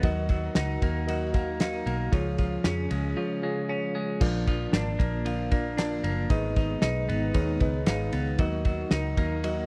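A straight 4/4 beat at 115 BPM drives this bittersweet, restless slice of jangly indie pop in Eb minor, cut from a longer piece, as the chords move from Ebm through Db, Bb and Abm and back to Ebm. Up front, a cloth-damped acoustic drum kit thuds along with a fat snare, tight kick and dark crash and ride cymbals, its top end rolled off. Beneath it, a foam-muted fingered electric bass sounds round and punchy, while a twelve-string electric guitar picks bright, twangy, compressed arpeggios trailed by tape echo. A reedy electric piano carries the accompaniment through its built-in speakers with a fast tremolo, and a very quiet string machine voicing cellos holds sustained chords with a slow attack, a warbling ensemble chorus and a sawtooth body. The recording has the dry, close feel of a 1970s-style studio session in a small room.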